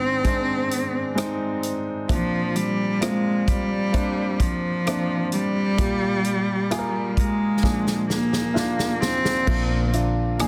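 A clear, focused bowed cello sings a longing melody over an open, long-sustaining baby grand piano from the start of this melancholic 65 BPM pop ballad fragment, with a natural country drum kit of tight kick, medium-tuned snare with soft clipping, hi-hat, rim click and crash entering at 0.2 seconds and playing a fill from 7.6 seconds, before a dark, round, foam-muted electric bass and a very quiet, full-bodied, thumb-plucked nylon-string guitar with finger squeak arrive at 9.5 seconds, set in a light studio reverb and a dense, heavily limited master.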